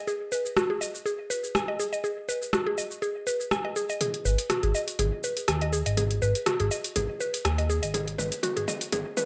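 A lightly swung afro house groove, played on an overdriven, layered electronic kit with metallic hats, rim click, shaker and toms, carries a woody, round FM mallet pluck spinning arpeggios through chorus, dub echo and a filter sweep, while a dark, smooth sawtooth-and-square bass with a ring-modulated edge enters at 4.3 seconds as this earthy, spiritual excerpt builds with a drum fill from 4.0 seconds.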